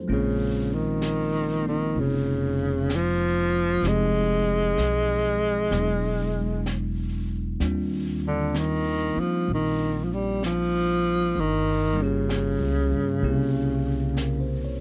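Jazz ballad in a slow 4/4 swing, with a smoky, melancholic mood, cut from a longer piece and lasting about 14.8 seconds. A breathy tenor saxophone carries the melody up front, close-miked and clear, its subtone and vibrato sitting in a low, narrow register. Beneath it, a bell-like tine electric piano plays bright, clean accompaniment while a woody pizzicato upright bass anchors the low end. A jazz brush drum kit sits far back in the mix, its brushed high-tuned snare and hi-hat sounding airy and polished. The harmony moves from Bbm9 through Fm7, E9 and Ebmaj13 before turning to Gm7b5 and C7b9, all captured in a dry, close 1970s-style studio sound with light reverb.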